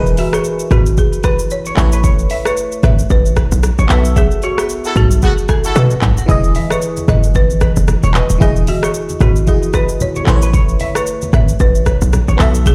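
A swung sixteenth-note afrobeats groove in 4/4 carries this sunny, breezy excerpt, with an electronic drum kit of deep kick, dark hi-hats, handclaps, shaker, rim clicks and toms and a punchy 808-style bass up front beneath a woody, rustic marimba melody with delay, a biting FM electric piano treated with chorus and phaser, a dark, clean electric guitar riff, a brief clear horn-section line at 4.9 seconds within a band accent, and soft-handed congas joining in the background at 6.3 seconds.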